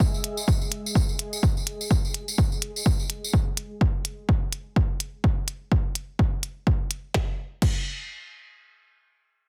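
A swung 126 BPM pulse in 4/4 drives this cool, clinical minimal techno cut from a longer piece, anchored by a punchy, tape-warm analog kick drum that sits up front from the start to 7.8 seconds. A close, dry acoustic tambourine jingles alongside it for the opening 3.3 seconds, while a bubbling sawtooth texture, detuned and resonant with random filter steps, soft attack and long release, drifts between G#3 and G#4 with chorus, reverb and sidechain pumping over the same stretch. From 0.2 seconds a minimal click kit joins, its tiny snare, clicky hats, hi-hat and crash cymbal overdriven and placed up front. The mix is dry and heavily compressed, with a radio-like sound, and the music moves from its opening section into a new one at 7.1 seconds.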